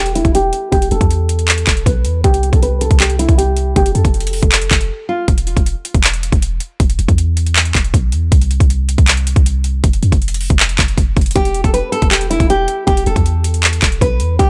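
A dry, close sound frames this menacing, eerie trap excerpt in E phrygian at 158 BPM with a half-time feel, where an up-front fingerpicked nylon-string guitar carries a classical-tinged melody through a low-pass filter sweep and tape echo before a brief break at 4.9 seconds. A deep, boomy 808-style bass with a clean sine tone, fast attack and dark decay runs throughout, under an electronic trap kit with a hard-clipped kick, metallic hi-hats, handclaps and a tape-warm, up-front character. The guitar drops out and returns at 11.4 seconds over the Em chord.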